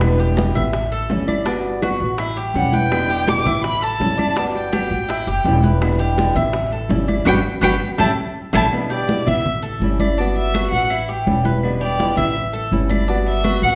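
Latin Cuban son and guajira at 165 BPM with a relaxed, warm mood, cut from a longer piece: fingerpicked nylon-string guitar and a metallic, double-strung tres picking arpeggios circle an Em7, A7 and Gmaj7 progression over thumpy gut-string pizzicato upright bass, with bright hard-hand congas, tight high-tuned bongos that stop at 8.6 seconds and distant woody claves in the background, while an up-front bowed violin enters at 2.6 seconds with vibrato and portamento and takes an expressive solo from 8.7 seconds after a band accent, all in a wet recital-hall reverb.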